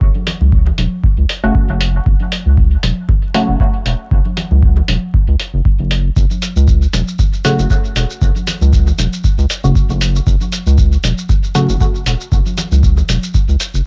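Dub techno at 117 BPM in F# minor, this short cut from a longer piece feels deep and meditative, resting on a single F# minor chord with a gentle swing on the sixteenths. A round, dark analog bass sits up front alongside a tape-warm electronic kick, the bass pumping against the sidechain across the full stretch. Muffled, pitched-down hi-hat and shaker sounds, re-recorded in a small room, fill in the upper rhythm, while overdriven, layered congas sit low in the mix with dub echo and their own sidechain pumping. A muted, detuned dub chord stab with a filter pluck and phaser drifts in at 1.4 seconds and returns at 7.4 seconds, treated with cassette-tape colour and dub echo as a filter sweep shapes it throughout. The whole piece is wrapped in digital ambience and vinyl crackle.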